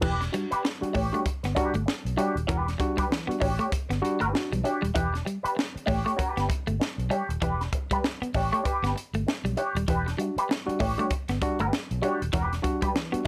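A hypnotic, driving funk groove in E dorian at 97 BPM opens at once with the full band, the sixteenths swung lightly over a single Em7 harmony. Up front, an electric guitar run through an envelope filter plays bright, twangy, compressed accompaniment with a wah character in the upper register, while a second clean, picked electric guitar repeats a lower riff beneath it. A worn, slightly out-of-tune tine electric piano, heard through its built-in speakers, adds stabs until about 4.8 seconds, then returns at 9.9 seconds. Underneath, a vintage muted fingered bass gives a dark, round, foam-muted low end with tube saturation. A crisp, polished fusion kit sits close in an airy studio room, its high-tuned snare and punchy kick joined by hi-hat and crash. Light reverb surrounds this short cut from a longer piece, which lasts about 13.3 seconds.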